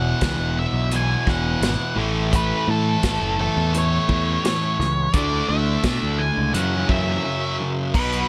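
Sunny and swaggering, this short cut of classic rock struts along at 86 BPM in a straight 4/4, opening on Esus2 and moving through Aadd9 and Dsus2 to F#7, with a brief break at 7.2 seconds. A dark, fuzzy octave-fuzz lead guitar carries the melody over a crunchy overdriven rhythm guitar set in the background and a brighter distorted electric guitar riff, all anchored by a growling, overdriven picked bass and a punchy, up-front vintage drum kit with dark cymbals and a rolled-off top. From 2.3 seconds a very quiet, gritty tonewheel organ adds sustained chords with key click and fast rotary-speaker shimmer, all in a dry sound.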